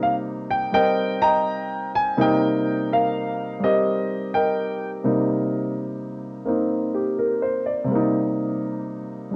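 A warm grand piano plays alone and up front in this short solo jazz excerpt, its natural tone spanning from C3 to Bb5. The mood is late-night and moody, set in C minor at a relaxed 84 BPM in 4/4 with a swung eighth-note feel. The harmony rests on a Cm7 chord through the brief 9.4 seconds, cut from a longer piece. A moderate studio reverb gives the piano a sense of space. Over it all sits the character of worn cassette tape, with a warbly pitch drift that lends the recording a hazy, aged quality.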